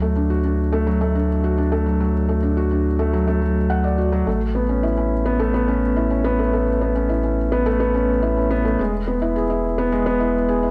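A straight 4/4 pulse at 106 BPM carries this hopeful, tender fragment of piano and strings electronica in A major, where a felt-muted upright piano plays an intimate, mellow riff up front, its audible action noise trailing into a digital delay, over a round, sine-like sub bass with tube saturation, moving through D, Aadd9 and E in a dark, warm production wrapped in moderate recital hall reverb.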